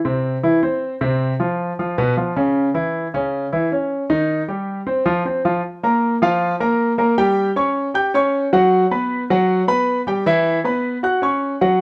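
Jazz at a lively, danceable 156 BPM in straight 4/4, carried by a solo concert grand piano that sounds warm and natural with a deep bass, set up front and ranging from B2 to G6. The harmony moves restlessly through chords such as Csus4, C#m, Gmaj7/F# and bare open fifths, shifting into a new section at 5.6 seconds. A moderate large-studio reverb gives the roughly twelve-second excerpt, cut from a longer piece, the open feel of a live room.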